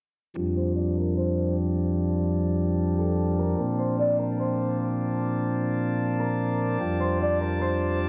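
This dreamy, floating hip hop excerpt in F major moves at 149 BPM with a half-time feel. An up-front chamber organ sets its full principal chorus with chiff into low-passed, sustained chords from 0.4 seconds, cycling F6, Bbmaj7 and back to F6. From 0.6 seconds a softer, dark, clean and fingered mellow electric guitar sings a melody through lush chorus, tape echo and a low-pass filter, while a filter sweep runs through the passage in a small room's light reverb with dark production.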